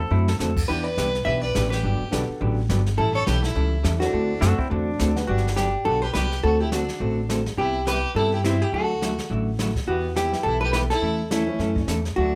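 Swinging at 209 BPM in 4/4, this playful, cheerful western swing snippet in G major rides on a woody pizzicato upright bass and a brushed jazz kit that opens with a drum fill at 0.1 seconds, while a dark, clean hollow-body electric guitar carries the melody over a second vintage hollow-body guitar's picked accompaniment, a clear, biting fiddle adds a distant second line, a fingerpicked pedal steel slides through brief phrases at the very start and again at 4.4 seconds, and a worn, slightly detuned upright piano sits in the background, dropping out at 5.5 seconds before returning from 10.3 to 11.9 seconds.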